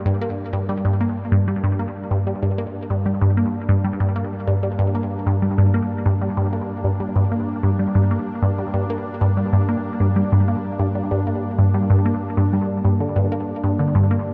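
A juicy, squelchy blip pluck sits up front, its resonant filter snapping with a fast attack and short decay as it repeats a riff between G2 and Bb3, coloured by phaser and delay. This is ambient, sequencer-driven space music at 95 BPM in 4/4 with a straight feel, holding on G minor throughout, and the mood is hypnotic and cosmic. Beneath it, a sweeping resonant pad sustains chords from G3 to D4, its detuned sawtooth tone airy and bright with a slow attack, a filter swell, a breathy noise layer and chorus. The pad sits well behind the pluck in level and fades in across the full 14.3 seconds, evolving as it grows. A huge ambient reverb with a 7.5-second decay surrounds the whole piece, giving a vast, floating space to this short cut from a longer work.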